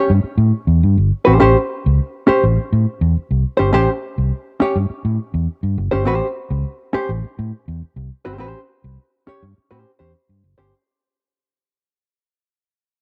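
The fingered electric bass stands out most, a dark, round, amped tone sitting up front and moving through a low range from its entry at 0.1 seconds. Beside it, a hollow-body jazz guitar supplies the accompaniment, its clean, compressed, fingered sound also dark and placed close in the mix. This is a playful, energetic funk cut in a straight four, taken from a longer piece. The harmony rests on A7 at the start and shifts to A7#9 at 1.4 seconds, where a fade-out begins and runs to the end at 10.7 seconds. Light reverb and the grain of a home cassette recording give the pair a homespun, intimate character.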